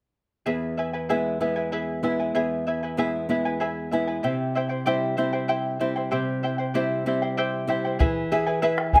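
Close, detailed microphones and light reverb frame this wistful, earthy Andean folk passage, taken from a longer piece and moving in 6/8 at 64 BPM. A shimmering, fingerpicked charango with double strings and a small, warm nylon-string guitar, its finger squeaks audible, share the accompaniment over E and C harmony. A deep, dark, saturated bombo enters at 8.0 s as the music returns to E, and an airy cane quena slips in at 8.9 s with a soft-attacked, vibrato-touched G#5.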